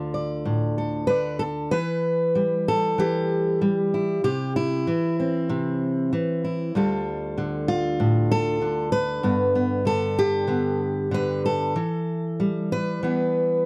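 Folk for solo fingerpicked steel-string acoustic guitar, intimate and reflective at 96 BPM in a straight 4/4, tuned slightly sharp to A4 = 445 Hz. The auditorium-bodied guitar sits up front, spanning D2 to D5 as it moves from Dm through Em, C, Dm and G before settling back on Em. The sound is dry and close, like a 1970s studio session, and this short cut from a longer piece lasts 13.7 seconds.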